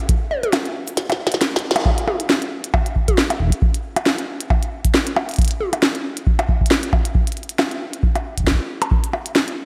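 A glitchy drum kit and a dry, deep analog kick open this intricate, playful IDM excerpt, cut from a longer piece with a gentle swing on the sixteenths. The kit's tiny snare, clicky hats, cabasa, toms and percussion blips are overdriven and scattered through a diffuse ambient delay, and a fill takes over while the kick drops out from 1.0 to 1.9 seconds, with a band accent at 1.7 seconds. The kick returns for the longer second section and stops at 9.0 seconds, while the kit carries on to 9.6 seconds in a dreamy mix soaked in lush hall reverb.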